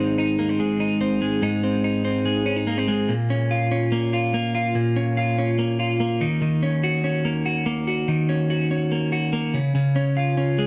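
A bright, clean twelve-string electric guitar sits up front in a moderate studio room, its twangy, compressed picking carrying the whole 10.7-second fragment cut from a longer indie pop piece. The tempo is 144 BPM in a straight 4/4, and the key is Bb minor, giving the brief passage a restless yet wistful mood. The guitar plays alone throughout, ranging from Ab2 up to Gb4. It opens on an Ab chord, then moves into a new section at 3.1 seconds on Bbm, passing through Ebm7 before settling on Db near the close. The jangling chime of the doubled strings gives the short clip its character, hinting at a song caught mid-thought.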